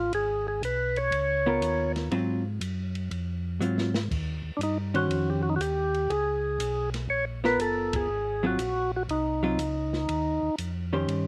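A percussive tonewheel organ carries the melody in this bluesy, soulful soul jazz organ trio fragment, its clean, full tone marked by second-harmonic percussion and key click as it turns through a slow rotary speaker up front. Beneath it, a second tonewheel organ holds down the bass, mellow and round with vibrato, also through a slow rotary speaker. A vintage hollow-body electric guitar enters at 1.5 seconds with picked, compressed accompaniment, its dark tone given a slapback echo. An acoustic jazz kit sits low in the mix with smooth cymbals, a medium-tuned snare and a boomy kick, playing a short fill at 3.6 seconds before the band lands an accent at 7.8 seconds. Swung eighths move over rich thirteenth and sixth chords, and the dry sound carries little reverb.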